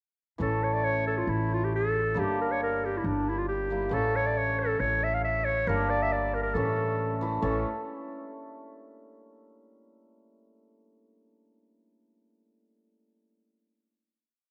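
Soulful and festive, this brief klezmer piece at 137 BPM in 2/4 sets a mellow, smooth-topped clarinet up front playing a classical-style modal melody with ornaments over a bright, shimmering hammered dulcimer's syncopated triad chords and a woody, growly pizzicato upright bass playing a quarter-note figure, all three playing from 0.4 seconds as the harmony moves between A and Gm before settling on a final chord, bathed in a wet echo chamber reverb.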